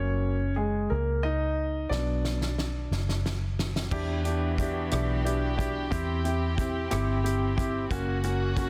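Six-eight pop ballad in E minor at a slow 60 BPM, aching and melancholic, where a deep, up-front concert grand piano and a dark, round, foam-muted electric bass play from the start, an acoustic country drum kit with a fat snare and punchy kick enters at 1.9 seconds with a fill, and a floating, sul tasto string section adds soft-attack sustained chords from 3.9 seconds over moving harmony from F# through Bm, Em7 and C/E, all in light small-room reverb with a dense, heavily limited modern master.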